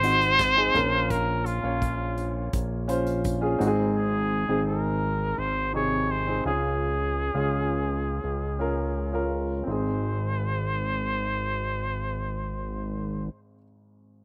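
Piano-driven pop in Ab major at 84 BPM, this anthemic, uplifting passage is cut from a longer piece and sets a breathy, intimate trumpet melody with vibrato over a clear, polished baby grand piano, both carrying a slapback echo. A fat, saturated analog bass with a sawtooth edge sits up front beneath them, while an acoustic drum kit played with bundle sticks (handclaps, hi-hat, tight kick, snare and toms) drops out at 3.8 seconds. The dry, outdoor sound moves through Ab, Bbm and Db before returning to Ab at 9.7 seconds, with the piano ringing on alone until 14.2 seconds.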